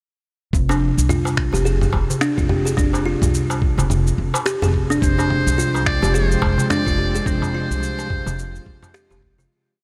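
This short, meditative organic downtempo piece opens at 0.5 seconds with a swung groove of woody pizzicato upright bass and a gritty, tape-warm sampler-style kit of finger snaps, shaker and low toms over a soft, thumpy electronic kick, soon joined by a buzzing kalimba arpeggio through analog delay and crisp darbuka, before a thin, muted trumpet traces arching jazz motifs with 12-bit grit from 5.0 seconds and a nasal, pumping bowed-like drone enters at 5.5 seconds as the hypnotic piece fades out from 6.5 seconds.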